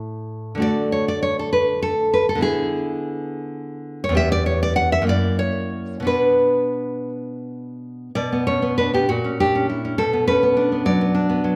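A dark, full-bodied fingerpicked nylon-string guitar plays alone and up front in this brief romantic classical fragment, cut from a longer piece, moving with a sunny rubato lilt in 6/8 at roughly 56-72 BPM by the dotted quarter, drifting through open chords before settling into B minor from 4.2 s, where rich extended harmonies color the progression, and ringing into moderate recital-hall reverb until it ends at 11.6 s.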